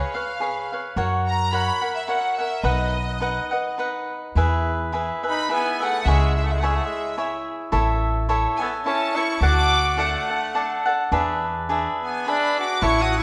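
Mexican folk mariachi in a swung 3/4 at 107 BPM, proud and romantic, cut from a longer piece and moving from B major into E major at 4.4 s. A smooth, even violin section with light vibrato carries the high melody over crisp picked cavaquinho accompaniment, and a woody, thumpy pizzicato upright bass on gut strings joins at 1.0 s. A clear, roomy classical-style trumpet adds a distant second line from 5.3 s, all set in a moderate scoring-stage reverb.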